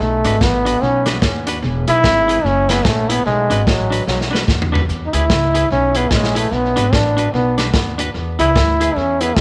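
A clear, up-front trombone with light vibrato and scooped notes, dressed in tape echo and a moderate spring reverb, solos across this cheerful, upbeat ska excerpt at 147 BPM in swung 4/4 and E mixolydian, over a gritty, saturated breakbeat kit with a tight kick and a drum fill from 4.1 to 4.9 seconds, a woody, growly pizzicato upright bass, and a clean, compressed semi-hollow electric guitar comping on Bm and E.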